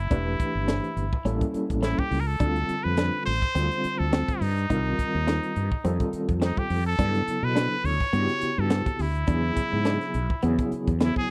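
Light reverb lends a sense of space to this brief slice of electric jazz fusion, cut from a longer piece, and the crisp acoustic drum kit sits in a small, pumping room. At 105 BPM in 4/4 with a gentle swing on the 16ths, the mood is funky and soaring, moving through Em7, A7b9, Dm7, Cm7, F9 and G6 before arriving on E7 at 9.3 seconds. Up front, a trumpet with a straight mute carries the melody as a jazz solo, its tone nasal and brilliant, while a dark, round fretless electric bass sits close and direct beneath it. An overdriven tine electric piano supplies gritty accompaniment with a fast tremolo through a combo amp, and a clean, compressed electric guitar adds fingered stabs with subtle chorus from the background. The drums combine hi-hat with a high-tuned snare and a punchy kick.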